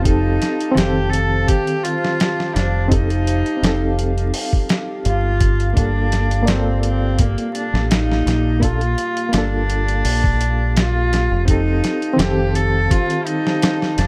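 Smoky and brooding, this trip hop excerpt sets a nasal, gut-string bowed cello melody with 12-bit sampler grit and tape echo over a reedy, bright electric piano shimmering with fast and harmonic tremolo, a detuned, chorused analog pad, a round, tube-saturated dub bass and a gritty, thumpy sampler-style drum kit that enters at 0.1 s, all drifting from F9 to Gm9 and back beneath a layer of vinyl crackle.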